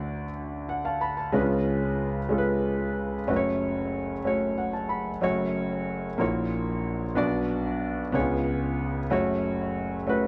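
A lone concert grand piano opens this fervent, soulful gospel excerpt in a straight 6/8, its intimate, up-front tone carrying deep bass, audible action noise and a touch of tape echo within a light reverb. Short fills arrive at 0.4 and 4.3 seconds, and the harmony moves from D through C#7 to F#m before a second section at 5.2 seconds passes through F#7/A#, Bm and C#7 to settle back on F#m. The passage is cut from a longer piece.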